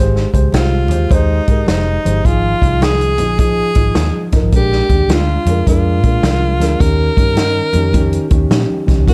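Uptempo 1960s-style soul in Ab major at 105 BPM with a swung 4/4 feel, this warm, uplifting excerpt cut from a longer piece moves through Abmaj7, Fm7/Ab, Bb7 and Eb7. A mellow, woody upright piano and a round, foam-muted electric bass start together, a vintage drum kit with a punchy kick and medium-tuned snare joins at 0.2 s, and very quiet, ringing congas arrive at 0.3 s. From 0.6 s a breathy, close-miked tenor saxophone carries the melody up front with clear vibrato, framed by a dark small-room production.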